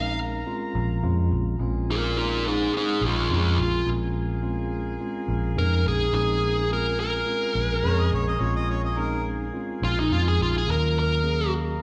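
A smoky, soulful blues in Bb minor opens with a dark, overdriven lead guitar solo, picked and up front with slapback echo, while a mellow tine electric piano adds a brief fill from 0.5 to 1.6 seconds. Set at 106 BPM in a straight 4/4, the piece settles over a Bbm7 chord, with the electric piano, clean and heard through its built-in speakers, carrying the accompaniment. Beneath it, a vintage fingered electric bass, foam-muted, round and amped, sits prominently in the low register, and a soft-attack horn section holds tight, jazz-style sustained chords with light vibrato and octave doubling. At 7.9 seconds a harmonica briefly takes a second line until 9.2 seconds, overdriven with vibrato, tongue slaps and scooped notes in a jazz style, before the harmony shifts to Ebm7 at 10.7 seconds. The sound is that of a live club gig heard through the venue's PA, with light reverb and small-room ambience, in a short cut from a longer performance.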